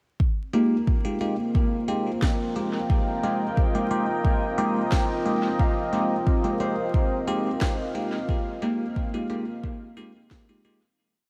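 Ambient dub at 89 BPM in F minor with a light 16th-note swing, meditative and hazy, this short piece opens on an Fm11 chord and fades out from 7.4 seconds. A deep, moody sawtooth pad with a sub octave holds slowly shifting chords up front through chorus, under a soft, slow, tape-warm kick, while a woody snare enters at 2.2 seconds as a sparse echoing beat. A bell-like tine electric piano places bright off-beat chord stabs through phaser and dub echo, and a fingerpicked Celtic harp rings in the background in three slow loops of unequal length drifting against each other, the whole mix dreamy with huge reverb and vinyl crackle.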